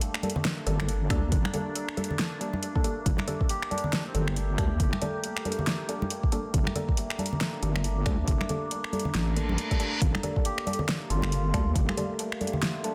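A dense, heavily limited mix with light digital ambience frames this dark, meditative deep dubstep excerpt in half-time swing, where a saturated, wobbling square-wave bass sits up front beside a deep, tape-warm electronic kick and a deep house kit of finger snaps, metallic hats and fat snare, while hard-handed, close congas, muted sawtooth dub chord stabs treated with phaser and dub echo, and a slow-attack drone of moving overtones hold a Gmadd9 beneath brief reedy, breathy melodica phrases at 3.5 and 10.5 seconds and a reverse cymbal at 9.3 seconds.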